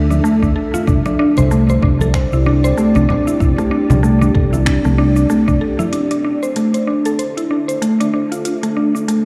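A cloudy, granular pad and a woody, mallet-like synth pluck with tape echo open this mystical, meditative stretch of swung organic downtempo over a dark, round fretless bass up front, joined by a tape-warm deep house kit of cabasa, congas, finger snaps and metallic hats, a deep electronic kick and soft-handed congas in the background, until the kick and bass drop out at 5.6 seconds and filter sweeps on the pluck and pad carry the Dm7 passage from 5.9 seconds inside a huge ambient reverb.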